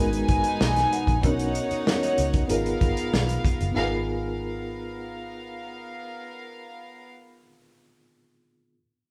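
A moderate large-studio reverb of 1.4 seconds gives this smooth, bittersweet fragment of lush 1970s-style soul the feel of a band playing live in one room, at 95 BPM in G# dorian over G#m9, Bmaj9 and G#m69 chords. A soft-attack, floating violin section carries a second line above a reedy electric piano with fast tremolo and a dark, round, foam-muted electric bass, while a tight, up-front drum kit with a medium-tuned snare plays only until 3.7 seconds. From 0.9 seconds a delicate, bell-like celesta sits in the background, adding a sweet glint of texture.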